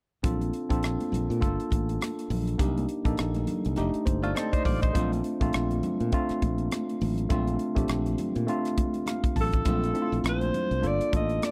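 A tight, dry funk drum kit of kick, hi-hat and rim click swings its 16ths at 102 BPM under very quiet, soft-handed congas in this lush, warm 1970s-style soul groove in Bb major, where a worn, lightly overdriven tine electric piano comps over Bbmaj9, Gm7, Cm9 and F13 chords beside a punchy, bright fingered bass, a clean, twangy electric guitar riff with tremolo flickers in at 4.2 seconds, the electric piano adds a fill at 8.8 seconds, and a raspy, growling alto saxophone takes up the melody at 9.4 seconds, all in a dry, close studio sound.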